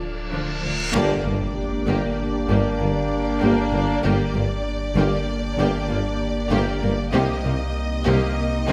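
Tense and futuristic, this excerpt of a hybrid orchestral and electronic film cue in 5/4 opens with a dark second violin line, a glassy, ethereal FM pad with ensemble chorus and a deep, punchy sub bass, joined at 0.3 seconds by rich viola, close cello and double bass sections, while a reverse cymbal gives way at 0.9 seconds to an electronic impact as a lush, vibrato-laden violin melody, a warm French horn section holding chords and a mellow tuba enter, all in a moderate scoring-stage reverb.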